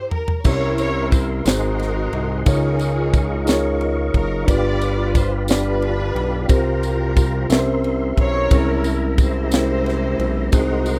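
A solemn, fervent slow gospel fragment in 6/8 opens with a bowed string section singing the melody with vibrato and portamento, joined at once by a fill from a dry, up-front funk drum kit with a high-tuned snare and tight kick; at 0.4 seconds a mellow tine electric piano, a fat, detuned sawtooth analog bass, a lightly overdriven tonewheel organ holding sustained chords through a slow rotary speaker with key click, and a jingly tambourine all enter over chords such as C7b9, Db69 and G7 in a rough, nearly reverb-free home-demo mix.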